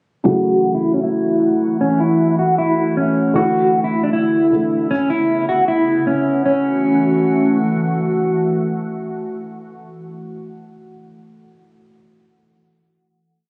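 Captured on a phone in a small room with light reverb and compression, this brooding, dark trap piece in F# minor runs at 155 BPM with a half-time feel, built on a filter sweep through its breakdown before settling on a final F#m7 chord at 6.5 seconds. A mellow, clean electric guitar sits up front with a fingered, looping melody repeated like a sampled loop, while a boxy concert grand piano holds open-voiced chords with audible action noise and deep bass until 4.9 seconds. A glassy FM pad with a slow attack, ensemble chorus and long release sustains ethereal chords through to 9.5 seconds.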